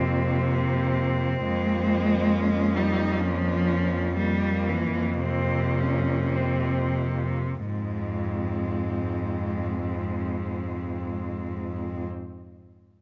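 Classical and elegiac, this solemn rubato excerpt in 3/4 for cello ensemble sets a warm, close cello melody with soft attack and portamento against a rich, intense second cello line in the background, while an expressive cello accompaniment and a focused bass cello sit up front, all bowed with vibrato in a moderate concert hall reverb, the music slowing until a new section begins at 7.7 seconds.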